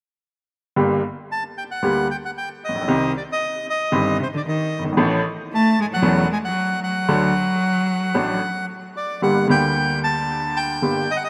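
A huge ambient reverb, applied in moderate measure, surrounds this short cut from a longer tango, setting its up-front instruments inside a spacious, lingering room. The mood is sultry and passionate, and the rubato feel lets the time bend within its 4/4 metre. A bright upright piano carries the accompaniment from 0.8 seconds, its woody, brilliant, natural tone and long sustain reaching deep into the bass, while a reedy bandoneon sings the melody in a high register. A rich bowed cello, played by a single musician with vibrato and a focused, smooth top, adds a second line in its middle range between 4.2 and 8.7 seconds. The harmony moves from G minor through C minor, A and D, then returns to G minor as a new section opens near the close.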